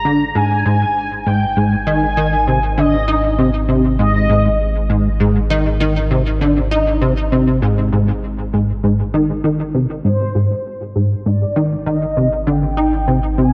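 A punchy, funky analog bass riff sits up front throughout this cosmic, luminous slice of sequencer-driven space music. Its sawtooth and pulse-wave tones snap with a quick filter pluck and then decay, thickened by ensemble chorus and delay. Beneath it, a round analog bass holds a deep, dark Ab1, its detuned blend of sawtooth, sine and triangle sustaining and evolving. An expressive portamento lead carries the melody between C5 and Bb5, smooth and warbling, with vintage, wave-folded colour, vibrato and chorus, sitting lower in the mix. It plays until 4.9 seconds, drops away, and returns at 10.0 seconds as the music moves into a new section. The piece runs at 99 BPM in a straight 4/4 in Ab lydian, resting on an Ab chord, and a moderate plate reverb lends a spacious glow to this brief cut from a longer work.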